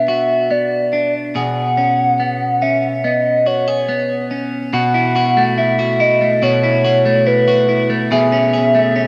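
A hollow, woody synth lead with a clarinet-like tone carries the melody across this floating, ethereal dream pop fragment, its soft, full-bodied voice colored by chorus, phaser, vibrato and digital delay. Beneath it, a bright, twangy electric guitar at the edge of break-up picks arpeggios up front, bathed in lush chorus and delay. A moderate plate reverb gives the pair a dreamy space as the harmony drifts through suspended and major-seventh chords, shifting to a new section at 4.7 seconds.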